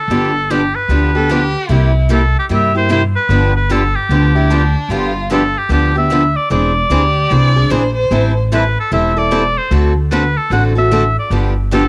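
Acoustic string swing in the jazz manouche style, playful and swinging at 150 BPM in G mixolydian, with a clear, up-front oboe carrying the melody in a classical manner with light vibrato while a focused, distant bowed violin adds a second line from 1.2 to 8.4 seconds. Two bright, picked parlour guitars with fresh strings accompany, one boxy with audible finger squeak and the other sitting in the background, over a woody, thumpy pizzicato upright bass on gut strings that sits up front. The oboe, violin and guitars carry a cassette-tape colour, and the whole short cut from a longer piece has the small-room ambience and light reverb of a home cassette recording.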